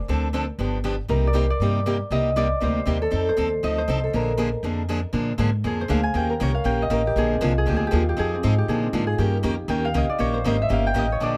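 A brisk swing at 237 BPM in 4/4, with a light shuffle on the eighth notes, drives this playful, charming slice of acoustic string jazz manouche in B-flat mixolydian, tuned slightly sharp to A4 = 443 Hz. A concert harp carries the melody, its fingerpicked tones ringing and close, while a picked archtop guitar supplies accompaniment with a bright, boxy snap from fresh strings and an audible finger squeak. Underneath, a pizzicato upright bass on gut strings gives a woody, thumpy pulse that sits up front in the mix. After the opening phrase, the harp takes a solo from 5.1 seconds over changes moving through Eb7, Bb7 and Fm7. Close, detailed miking and a touch of reverb keep the trio intimate in this short cut from a longer piece.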